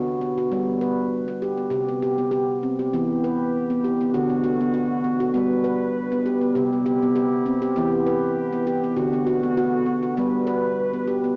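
A ringing stainless-steel handpan opens this gentle, meditative world piece, its arpeggios played with sharp finger strokes, close-miked and up front, at 99 BPM in 4/4 with a light sixteenth-note swing. At 2.9 seconds a warm brass ensemble enters well beneath it, holding classical-style sustained chords with light vibrato as the harmony cycles through D, G, C and E minor. A lush hall reverb surrounds the music, while cassette tape gives it the hazy character of a home recording heard through a small speaker.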